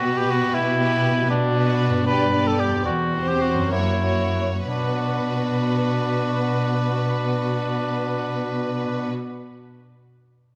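Stormy and dramatic, this classical excerpt in 6/8 moves with rubato, slowing from 0.5 to 4.7 seconds as a lush, vibrato-rich violin section carries the melody. An up-front cor anglais with a smooth top plays the second line beside a softer background violin section, while dark, woody violas fill in the accompaniment and expressive cellos anchor the bass. Mellow, fingerpicked concert harp arpeggios ring through a wet scoring-stage reverb and carry on alone after the other parts stop at 9.1 seconds.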